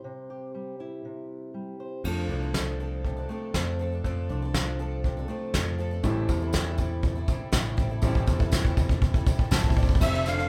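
Indie folk with a hopeful, uplifting mood and a building arrangement, moving at 120 BPM in a straight 4/4 and cut from a longer piece. A dark, fingerpicked steel-string acoustic guitar opens alone over a C chord, its finger squeaks audible. At 2.0 seconds a bright, boxy twelve-string acoustic guitar with octave-doubled shimmer joins, along with a direct electric bass and an up-front brush drum kit with a fat snare and tight kick, as the harmony shifts to F6 and the drums carry a long fill through the build. Around 6.0 seconds a natural-sounding baby grand piano settles in the background and a jingly tambourine adds a very quiet sparkle, with the chords turning to Am7 and the piano adding a fill near the end of the build. At 10.0 seconds a reedy, close-miked musette accordion takes the melody, with a mellow French horn offering a smooth second line with light vibrato, all heard as a band playing together in one room with light reverb.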